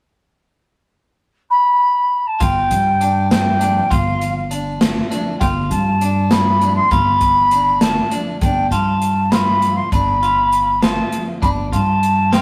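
Driving and bright, this progressive instrumental band fragment moves in an uneven 5/8 at 200 BPM in eighths, set in G mixolydian. A pure, straight-toned silver concert flute carries the melody from 1.5 s with a crisp attack. At 2.4 s the band enters on a G5 chord: clean electric guitar picks quiet arpeggios through analog delay, a woody pizzicato upright bass sits up front, and a swinging big-band kit adds an airy sheen and a punchy kick. A small room and a rough rehearsal-room sound with tube saturation lend the whole piece some grit.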